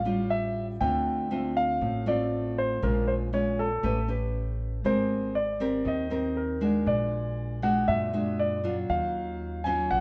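A straight 4/4 bossa nova pulse at 119 BPM sets a sunny, sophisticated mood in this short section cut from a longer piece, tuned slightly high to A4 = 444 Hz. A polished grand piano carries the melody up front with long sustain, while a fingerpicked classical nylon-string guitar with fresh strings plays the accompaniment, also up front, and a woody, thumpy pizzicato upright bass with gut strings anchors the low end. The harmony drifts through rich jazz colours from A7b13 and Dm7 to Abmaj9 and Bb7alt before landing on Ebm9, all in a moderate, large studio reverb.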